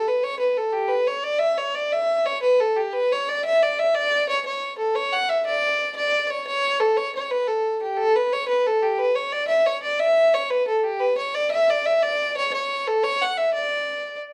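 A lone bowed fiddle opens this rollicking, lively fragment of Celtic folk, cut from a longer piece and set in 6/8 with a straight feel. The single player's tone is dark and woody, with a nasal, slightly boxy edge and a light vibrato. The tune stays in a compact middle register, moving between G4 and F#5. Its opening strain runs to about 6.5 seconds and then comes around again until the fiddle stops at 14.2 seconds. The instrument sits up front, yet a wet studio reverb and a listening position further back in the room lend the sound a sense of space.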